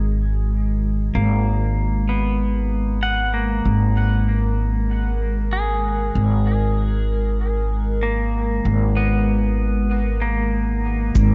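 This ambient dub piece moves at 96 BPM in a straight 4/4, resting on a single G#m7 chord in G# minor with a spacious, deep mood. A warbling, nostalgic pad of detuned sawtooth and triangle tones holds sustained chords throughout, its slow attack and long release softened by chorus and its own reverb, while a filter sweep runs across it until 11.2 seconds. Up front, a woody, growly pizzicato upright bass with steel strings anchors a low G#1. From 1.1 seconds, a clean, compressed pedal steel guitar played with fingerpicks spins slide arpeggios with volume swells, darkened by a low-pass filter and trailed by dub echo. Only at 11.2 seconds do a deep analog electronic kick and a tape-warm cabasa in the background appear, just before the cut. The mix carries light reverb, and its top end stops at 7.6 kHz.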